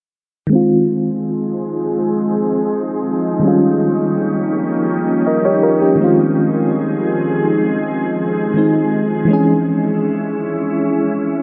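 Opening at 0.5 seconds, a mellow FM electric piano plays R&B accompaniment in a straight 4/4, its round, warbling, vintage tone shaded by chorus, tremolo and a low-pass filter, with a noise layer beneath its fast-attack, decaying notes. At 1.2 seconds a glassy, ethereal FM pad joins with slow-attack sustained chords, thickened by ensemble chorus and its own built-in reverb. The smooth, dreamy chords move from Ab6 through Eb9 and back to Ab6 before a closing Dbm, all soaked in a huge ambient reverb while a filter sweep runs through this short cut from a longer piece.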